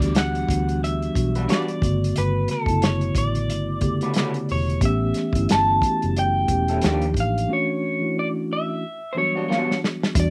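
Introspective and late-night in mood, this short neo-soul and R&B passage moves at 90 BPM in 4/4 with a lightly swung sixteenth-note feel, set in E dorian. A dry, muffled soul drum kit sits up front with a tight kick, a medium-tuned snare and hi-hat, its top end rolled off for a lo-fi character, while a dark, round, foam-muted fingered electric bass supplies a punchy low end. A mellow tine electric piano, clean and heard through its built-in speakers, carries the chords, which move from Em9 through Gmaj9#11 and A7 before touching D#maj9 and Dmaj9 and settling back on Em9. A bright, twangy, slightly broken-up electric guitar through a small old amp plays the melody with slapback echo, and at 1.4 seconds a second, compressed guitar with the same echo joins underneath with a supporting line, warm, lo-fi and close. A break arrives at 7.5 seconds, capped by a drum fill from 9.5 seconds, and the dry outdoor sound with little reverb keeps every part intimate as the piece is cut off mid-flow.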